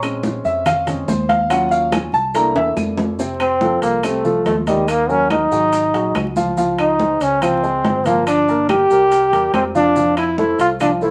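A brilliant, forceful trombone takes the lead at 3.4 seconds, up front with vibrato and scooped notes in a punchy jazz style, over a sunny, sophisticated Afro-Cuban jazz groove at 142 BPM in 4/4. A natural-sounding baby grand piano opens with a solo passage up front before a drum fill leads in, then carries the chords, including Bbm7, Dbmaj7 and Fmaj7, alongside a round, amped fingered electric bass. Thick-skinned congas and woody claves sit in the background, with ringing metal timbales, grainy maracas and tight, high-tuned bongos, all in a moderate club reverb with vinyl crackle, in this cut from a longer piece.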